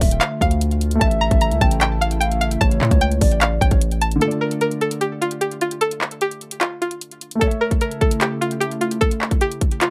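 A half-time trap groove at 150 BPM in D harmonic minor drives this melancholic, menacing clip, with an up-front electronic kit of hard-clipped kick, metallic hi-hats and handclaps under a distorted, heavy 808-style bass that drops out at 4.2 seconds. A bright, twangy string-like resonator pluck carries the melody with chorus and delay, joined until 3.8 seconds by a hollow, woody clarinet-like synth lead as a second line, while a dark, mellow grand piano keeps up the accompaniment. A warbling, lo-fi tape-like pad holds nostalgic sustained chords, pausing at 4.2 seconds and returning at 7.9, all within a light reverb over a Dm to A progression.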